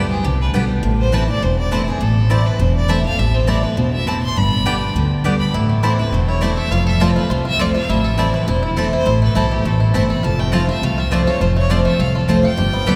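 A woody, pizzicato upright bass sits up front in this rustic, haunting bluegrass piece at 204 BPM in A minor, anchoring a bright, full-bodied picked acoustic guitar with audible finger squeak and a mandolin adding double-string stabs. A clear, biting fiddle carries the melody from a distance with light vibrato, joined at 5.5 seconds by a twangy, percussive banjo played with fingerpicks. The whole group rings in the long, wet reverb of a church or concert hall, and the chords move among G, A minor and F.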